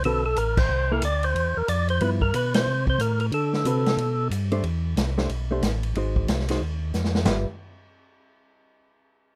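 Soul jazz organ trio excerpt, soulful and swinging at a brisk 183 BPM in G mixolydian, where a fat, lightly overdriven tonewheel organ with third-harmonic percussion carries the melody until 4.3 seconds over a round, dark organ bass with key click and slow rotary speaker, a vintage acoustic kit with dark cymbals and a punchy kick, with the whole band hitting accents at 0.5 and 2.5 seconds before a drum fill at 6.9 seconds, and a clean, compressed hollow-body jazz guitar comping through chords such as Am11 and Ab7 in a rough home demo mix with light reverb.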